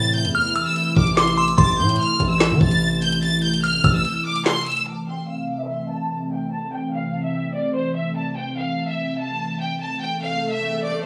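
Tense and ominous, this half-time drill cut in A minor moves at 146 BPM, with a biting, up-front violin section carrying the melody over a hollow, flute-like pad, both running the full 11.1 seconds through low-pass filtering. A distorted, saturated 808-style bass and an electronic kit with a knocking kick, woody snare, metallic hats, handclaps and vintage 12-bit sampler grit drive the opening, joined by a glassy, warbling FM bell line with chorus, tremolo and delay. A break arrives at 4.0 seconds, then a filter sweep runs from 4.9 seconds as the strings and pad continue, until an electronic swell enters at 10.1 seconds, all within a rough home-demo mix with digital studio ambience.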